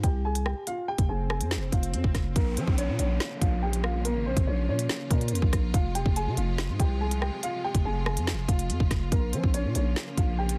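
A growling, buzzy 808-style bass with a fast attack sits up front beside a drill drum kit of hard-clipped kick, woody snare, crisp hi-hats and rim clicks in this menacing, cold half-time hip hop drill excerpt at 142 BPM, where a dark, boxy concert grand piano with audible action noise carries the melody through tape echo over Fmadd9 and Bbm chords, an electronic swell and downlifter appears at 1.1 seconds, and a distant, lush symphonic string section enters with bowed, vibrato chords at 2.4 seconds, set inside a dry, dense, heavily limited master dusted with vinyl crackle.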